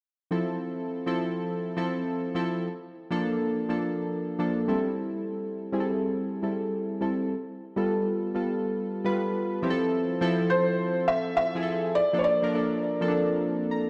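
This excerpt from a longer R&B piece opens at 0.3 seconds with analog synth keys carrying the accompaniment, a round, evolving pulse-and-sawtooth tone with a filter sweep, fast attack and decaying notes, thickened by chorus and placed up front. The mood is bouncy and upbeat at 103 BPM in 4/4, with a swung sixteenth-note feel in F major, and the harmony moves through Fmaj7, Bbmaj7, Am7 and G9 before returning to Fmaj7 and Bbmaj7 at 9.6 seconds. At 10.5 seconds a felt-muted upright piano takes the melody in a narrow range from C5 to E5, its soft, mellow, intimate sound softened by thin felt and echoed by a digital delay. The synth keys add a short fill near the end, at 13.4 seconds. A dark production sits in a wet plate reverb with a long tail, giving the close, muted piano and the warm keys a shared sense of space.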